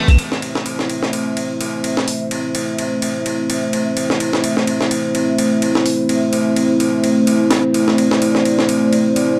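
A deep, moody analog pad of detuned sawtooth, square and triangle tones with a sub octave and ring modulation holds a slow-attack A minor chord under chorus and sidechain pumping from 0.0 s, while a compressed, gritty sampler-style breakbeat kit with a thumpy kick, medium-tuned snare, hi-hat and ride cymbal drives this raw, dark 127 BPM breaks fragment with a 56% swing on the sixteenths, set in a lush hall reverb of 1.9 seconds.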